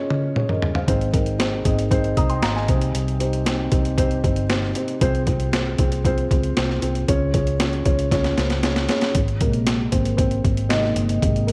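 This piano-driven pop excerpt opens on a felt-muted upright piano, soft and boxy with its action noise audible, as a drum fill sets off from a sampler-style boom bap kit. The drums are gritty and pitched down, with a thumpy kick, a high-tuned snare and overdrive, compressed and re-recorded in a large room yet sitting up front beside the intimate piano. At 0.9 seconds a vintage muted fingered electric bass enters, dark, round and punchy, as the chords move from Db through Ab, Cm and Fm/C back to Db. A second drum fill at 8.1 seconds leads into a felt piano solo from 9.2 seconds over an Abadd9 chord. A moderate echo-chamber reverb lends a digital ambience, and the mood is earnest and bittersweet in a straight 4/4.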